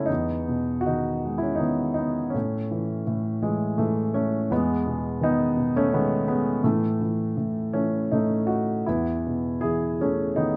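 Classical solo piano in a lyrical, peaceful and tender mood, moving in 3/4 at roughly 78-87 BPM with a flexible, rubato feel in E major. A warm baby grand sits up front, ranging from E2 to A5 as its harmony rocks between Emaj7 and A over the roughly 10.6 seconds of this excerpt from a longer piece. Close, detailed microphones and light reverb give the piano an intimate, clear presence.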